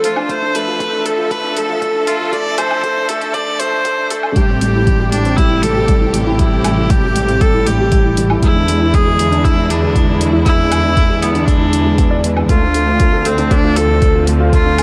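Light reverb and a studio ambience frame this intimate, moving piano and strings electronica, cut from a longer piece. A felt-muted upright piano plays a soft, dark riff with short sustain and audible action noise. Up front, a nasal, earthy solo viola carries the melody with an airy bow and light vibrato, and both instruments are bathed in shimmer reverb. Behind them, a lush studio string section holds sustained chords in the background, its smooth top pumping with sidechain and shimmer reverb. Overdriven electronic hi-hat and woodblock tick from the start, joined at 0.3 seconds by a deep, overdriven kick, both re-recorded in a small room. After the build-up, the drop lands at 4.4 seconds, where a rich bowed double bass section enters with even vibrato and its own sidechain pumping, under chords moving from Fmaj7 through Am7 and E7 to Dm7.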